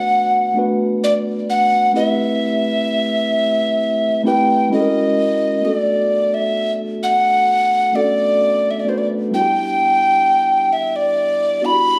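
A breathy, hollow soprano recorder carries the melody up front in this moody, late-night R&B excerpt, its woody tone showing vibrato, tongued notes and a touch of chiff, with lifted highs that keep it airy. Beneath it, a mellow tine electric piano plays a clean, warm accompaniment that sounds as if it comes through built-in speakers, also placed close in the mix. Both parts play throughout, moving at a slow 65 BPM in a straight 4/4, tuned slightly low to A4 = 437 Hz. The harmony drifts through Bm7, Am9 and F#7 before a second section begins at 5.6 s, returning to Bm7 and settling on Em7. The sound is captured on a phone in the room, with club ambience, moderate plate reverb and compression giving it an intimate, lived-in feel. It is cut from a longer piece.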